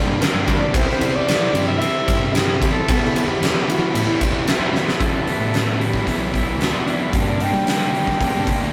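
Quiet-loud alternative rock with an angsty, brooding mood, moving at 113 BPM in a straight 4/4 and centered on E minor. Two distorted fuzz guitars sit in the background playing a riff, one dark and one bright, joined by an overdriven picked electric bass with a warm, amped fuzz tone. Over them a mellow alto saxophone carries the solo melody with vibrato, a soft attack and a smooth top, in a pop style. Up front, a huge acoustic arena drum kit drives the groove with a punchy kick, a fat snare, bright cymbals, hi-hat and ride, and a drum fill at 4.7 seconds leads into a new section at 5.0 seconds. The chords move from Gm through C to Em, with Gm returning at 7.1 seconds. Moderate reverb and a rough rehearsal-room sound give this fragment of a longer piece a raw, live feel.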